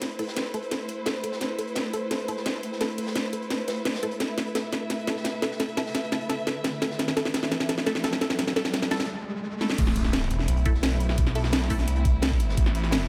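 Aggressive and dark, this fragment of technical drum and bass runs at 172 BPM in A minor, holding on an A minor chord throughout. A bowed studio string section sustains vibrato-laden chords from the start, pumping against the sidechain, while an overdriven drum and bass kit with a cracking snare, bright hats and crash cymbal sits up front over a gritty, saturated breakbeat kit tucked in the background. A lo-fi, wave-folded pluck plays chorused, delayed arpeggios under a filter sweep, joined by a muted, resonant dub chord stab kept very quiet. The build-up carries a drum fill and a riser from 6.3 seconds, with a brief break at 9.1 seconds. The drop lands at 9.8 seconds with an impact, a knocking electronic kick and a swirling, thick detuned saw bass driven through phaser and tube saturation, all in a light small-room reverb.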